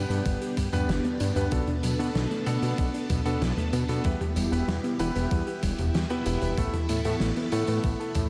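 Moody and nostalgic, this synthwave excerpt moves at 95 BPM in a straight 4/4 through G, Bm7, Em and Asus2, its dreamy mix soaked in plate reverb. A fat, detuned sawtooth bass sits up front with sidechain pumping, shared by the lush string machine's slow-attack chords, while an overdriven, thumpy electronic kick enters at 0.3 seconds beside an oversized, low-tuned acoustic kit whose gritty, fat snare, hi-hat, tambourine and toms ring in a bright stone room. Clear grand piano stabs with audible action noise and analog delay mingle with soft, round pluck arpeggios that sit dark in the background, colored by chorus, cassette tape and delay.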